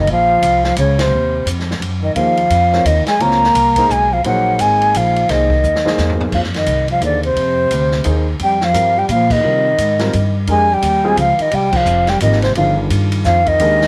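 Modal jazz in a swung three-beat metre, searching and hypnotic, this passage from a longer piece puts an airy, hollow flute melody with vibrato up front over a mellow trombone second line, a woody pizzicato upright bass, and an open acoustic drum kit with a boomy kick. A dark grand piano enters with accompaniment at 2.2 s, and a drum fill at 5.6 s leads into a new section at 6.3 s, with band accents marking the flow. Gentle reverb and small-room ambience give the sound a natural feel.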